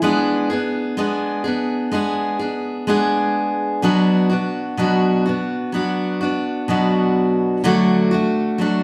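Emotional and melancholic, this short pop fragment features a lone picked steel-string acoustic guitar, full-bodied and up front, with the round depth of a jumbo body. It moves from G#dim to Bm and settles on D at 7.6 seconds, captured live in a single room and bathed in a wet, large studio reverb.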